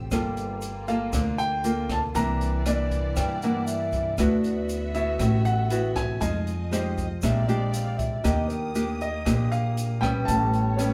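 Bossa nova with a melancholic, intimate mood, heard in a short cut from a longer piece played live by a band in one room with a wet studio reverb. An up-front, fingerpicked nylon-string guitar carries the accompaniment, its finger squeaks audible, while a woody pizzicato upright bass with steel strings anchors the low end and an open jazz drum kit adds hi-hat, rim click and a boomy kick. A grainy egg shaker sits in the background, and a lush, distant bowed string section holds sustained chords with a focused vibrato. From 0.9 seconds a warm grand piano carries the melody, its action noise lending a natural closeness, and between 3.2 and 8.9 seconds a breathy clay alto ocarina adds an expressive second line with a crisp attack and vibrato. The harmony moves through rich extended chords such as Gm9, Fm9, Bb13 and Ebmaj7 before settling on A9.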